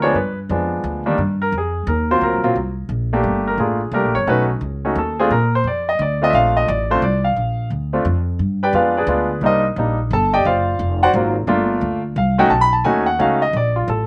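A swinging waltz time, with the eighth notes lightly swung, drives this relaxed jazz piano trio fragment, cut from a longer piece. The clear concert grand piano carries the melody as a solo across the full 14.1 seconds, its polished, present tone showing a deep low end and short sustain, touched by a slapback echo. Beneath it, the upright bass is plucked with a woody, warm pizzicato from steel strings, sitting up front alongside the piano. The harmony moves through colourful jazz changes such as G7b9, Cm7, a rootless D7#9b13 and B9, resolving to Bbmaj7, and the same passage returns at 7.4 seconds with slightly varied voicings. The sound is dry and close, recorded outdoors with little reverb, giving both instruments an intimate, immediate presence.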